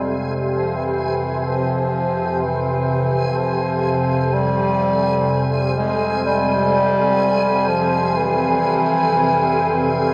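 Drenched in cathedral-like reverb and heard through a small-speaker sound, this unsettling, ominous dark ambient drone excerpt sets a warm, up-front solo bass clarinet with tape echo fading in over a warbling, detuned organ-like drone with ensemble chorus, while a bright, reversed, granular swelling texture with shimmer reverb fades in quietly above across the full 10.1 seconds.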